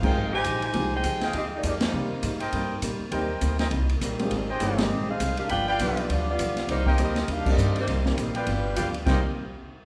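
Dramatic and swinging, this big band swing excerpt in C minor at 202 BPM sets a mellow, tight saxophone section on the melody over woody pizzicato upright bass, a dark baby grand piano with audible action noise and a clean hollow-body jazz guitar in the background, clear trumpet section stabs and an airy, polished drum kit with a boomy kick, heard in a wet recital-hall reverb with band accents at 1.8, 4.8 and 7.4 seconds.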